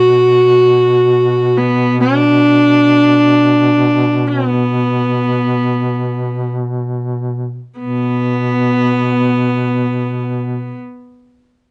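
A single bowed viola leads this mournful Caucasian folk lament, its gut-string tone carrying a reedy edge and a light vibrato in a period style. Beneath it, a duduk holds a low drone on B2, its warm folk voice colored by vibrato and scooped notes. Both instruments sit up front from 0.0 to 10.8 seconds, with the viola's melody, ranging from B3 to F#4, clearly louder than the duduk. The music moves in free time with a solemn, unhurried feel, slowing down from 1.5 to 7.8 seconds before passing into a second section. Close, detailed microphones and light reverb give the sound an intimate, warm presence in this short passage cut from a longer piece.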